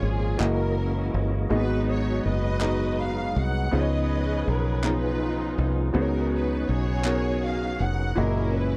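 Reverent yet jubilant, this slow gospel excerpt moves in 6/8 with a straight feel, drawn from a longer piece. A dark, woody string section carries the melody with bowed, sul tasto vibrato that gives the line a lush ensemble sound. Beneath it, a clear concert grand piano plays the accompaniment with deep bass and long, natural sustain. A fat, percussive tonewheel organ holds sustained chords in the background, its key click and second harmonic percussion colored by chorus vibrato and a fast rotary speaker. A punchy, foam-muted fingered electric bass sits up front with a bright, direct tone, while crisp, band-limited group handclaps with a vintage, human quality join at 0.4 seconds and stop at 7.4 seconds. The harmony moves from F#13 through G#m7, C#9 and C#9sus4 before returning to F#13, all captured in a dry, close 1970s-style studio sound with little reverb.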